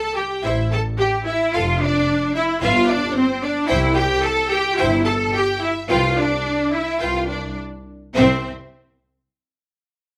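Light reverb gives this string orchestra a gentle sense of space in a lively, spirited classical-period movement at 108 BPM in 4/4, played with a rubato feel and tuned to A4 = 439 Hz. From the opening, the violin section carries the melody with a lush, focused tone and a smooth top, while the violas supply an intense accompaniment beneath it. The cellos sit up front with a clear bowed sound, holding down the bass line. At 0.4 seconds a second violin section adds a rich supporting line, and the double basses join, even and distant in the low register. The harmony moves from A minor through D minor and G6 to C before reaching G7 over C, in a brief passage cut from a longer piece.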